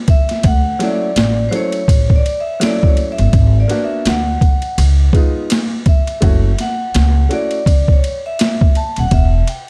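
A vintage-toned upright piano opens the track at 0.0 seconds, laying down smooth, short-sustained chords in the middle register, and a vibraphone struck with medium mallets joins almost at once with a metallic, airy melody high above, trailed by analog delay. This is relaxed jazz-hop at 83 BPM in 4/4 with a swung sixteenth-note feel, moving in D major through Dmaj9, G#m7b5, C#7 and F#m7 before landing on Em. A gritty, compressed boom bap sampler-style kit sits up front with a thumpy kick, a medium-tuned snare, hi-hat and ride cymbal, its overdriven sound carrying the character of a large room. Pizzicato upright bass on steel strings enters at 0.4 seconds, woody and prominent in the low register, and stands among the loudest parts alongside the drums. The piano drops out at 7.6 seconds, leaving the vibraphone, bass and drums, and a drum fill at 9.1 seconds closes this short cut from a longer piece, all in a dry, close sound with little reverb.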